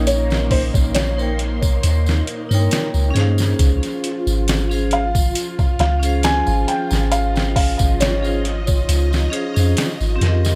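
A brooding, dark trip hop excerpt at 68 BPM opens on a soft, muted felt piano melody with tape echo over ringing hard-mallet vibraphone with tremolo, phased sawtooth string-machine cellos with ensemble chorus and 12-bit grit on Eb7 moving to Dbmaj7 at 3.6 seconds, and a round, deep 808-style bass, before a pitched-down, gritty boom bap kit with a thumpy kick and a saturated tambourine, both carrying dub echo, joins at 0.1 seconds in a dry, echo-heavy mix where the piano stops at 9.7 seconds.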